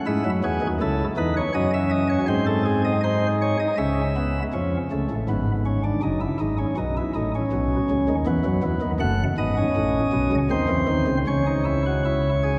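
A chamber organ voiced with sparkling flute stops carries this baroque-style classical fugue alone, its three voices weaving through a fragment cut from a longer piece. The flute pipes sound light and bright, with a chiff at the start of each note, and they sit up front even though the listener seems placed further back in a cathedral. The reverb is wet and lingering, with a long tail that rings around every phrase. The music moves in a graceful triple metre with a straight feel, and its mood is elegant and joyful despite its minor-leaning harmony. A new section begins at 4.5 seconds, and a diminished chord near 9.0 seconds adds a moment of tension before the fragment settles back onto its home minor chord at its close.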